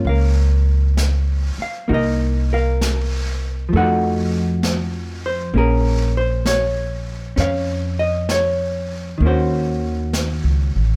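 A dark, clean, picked hollow-body electric guitar and a woody pizzicato upright bass sit up front from the start of this intimate, melancholic swung jazz ballad fragment, captured dry and close, with a quieter brushed drum kit of snare and hi-hat entering at 0.1 s with a rolled-off top, beneath chords moving from Gbmaj7 through F7b9 to Bbm7 and Ebm7.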